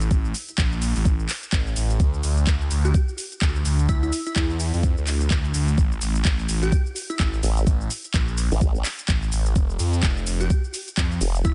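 Bass house at 127 BPM with a swung 16th-note feel, aggressive and bouncy, built on a thick, swirling phased saw bass and an overdriven, knocking electronic kick up front, joined by a garage kit of handclaps, metallic hi-hats and shaker. A glassy, crystalline wavetable pluck with chorus, tape colour and delay plays from 2.8 seconds and returns at 10.4 seconds, while a wobbling formant-filtered bass with tube saturation adds its pumping weight from 7.4 seconds. The mix is dry and dark at the top, cut from a longer piece.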